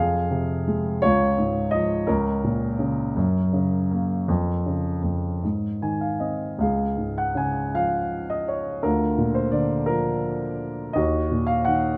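In a 6/8 with free rubato at about 51-57 dotted-quarter beats per minute, this tender, lyrical classical passage cut from a longer piece features a single warm, up-front grand piano ranging from Db2 to Ab5, moving from Bb minor through chords such as Gb and Ab to a brief piano fill at 5.4 seconds before settling into Db major at 6.6 seconds, all heard through close, detailed microphones in a recital hall with moderate reverb.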